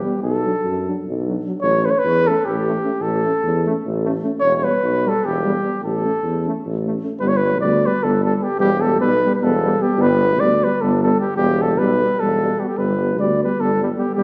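Pulsing in an asymmetric 7/8 at 302 eighth-note beats per minute with a straight feel, this festive, exuberant stretch of Balkan brass band music is cut from a longer piece and sits in A mixolydian. A mellow flugelhorn carries the melody up front, its smooth top touched by light vibrato in a polished, classical manner. Beneath it, a dark euphonium with vibrato sits in the background while a trombone of warm tone supplies accompaniment alongside it. A vintage-toned tuba joins at 0.2 seconds to hold down the bass up front. The harmony moves from Bm through A and Em in the opening half, then shifts at 7.2 seconds to alternate between G and Em. The whole band rings in a wet recital hall with a 1.8-second reverb tail, giving the brass the resonant bloom of a church or concert hall.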